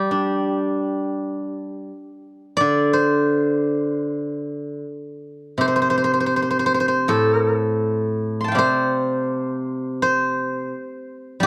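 A steel-string zither played with fingerpicks carries this short Chinese traditional solo on its own from 0.0 to 11.5 s, its silvery, ringing acoustic tone sitting up front in the mix. The mood is flowing and pastoral, set in the G shang mode at about 82 BPM in 4/4. The pulse is loose and rubato with uneven beats, so the phrasing breathes freely instead of following a strict grid. The instrument spans a broad register from A2 up to C6 and is tuned slightly below standard pitch, with A4 at 437 Hz. A moderate studio reverb and a dark, warm production round out the sound of this excerpt cut from a longer piece.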